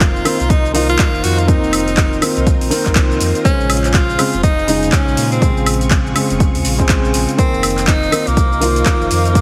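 A swung 122 BPM deep house groove in Bb minor, built on an overdriven, deep, layered electronic kick and a layered kit of handclaps, metallic hats, shaker and woodblock, carries this late-night, moody fragment, where a breathy, close-miked tenor saxophone with vibrato and tape echo sings a jazz-style melody over felt-muted upright piano stabs with audible action noise, a mellow sine sub bass with octave, and silky vintage string-machine chords pumping in the background, all moving from F7sus4 to Bbm9 and back to F7sus4 at 7.4 seconds in a heavily compressed, radio-like sound with light reverb.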